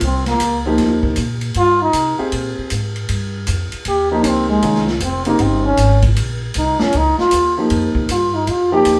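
Modal jazz in C phrygian swings at 156 BPM with a cool, intense mood, as a clear trombone takes a roomy, vibrato-laced solo up front over a pizzicato upright bass with a woody tone and a big-band drum kit of hi-hat, ride, medium-tuned snare and punchy kick. A warm grand piano joins on accompaniment at 0.7 s, and the harmony moves from Cm7 to Bbmadd9 at 4.6 s. The band sounds as if it is playing live together in one studio room, with the whole passage cut from a longer piece.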